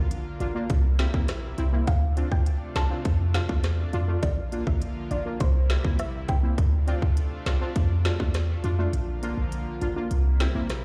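Dancehall at 102 BPM in a straight 4/4, tough and bouncy, this piece cuts in partway through a longer track and cycles through Bb, C7, Dm7 and F6. A deep, boomy 808-style bass with a noise layer and a fast, decaying attack sits up front beside an electronic island pop drum kit, whose tight kick, woody snare, rim click and smooth hi-hat carry a tape-warm sheen. Punchy, nasal synth brass stabs with chorus fill the middle as accompaniment. Behind them, a thick, warbling vintage unison pad holds detuned sawtooth chords with a slow attack and long release, pumping under sidechain and chorus. From 1.9 to 6.4 seconds a soft, round, dark pluck carries the melody high above, colored by chorus, phaser and delay. The kick drops out at 8.9 seconds. The whole mix sounds like a big sound system in a bare room, with a large studio reverb.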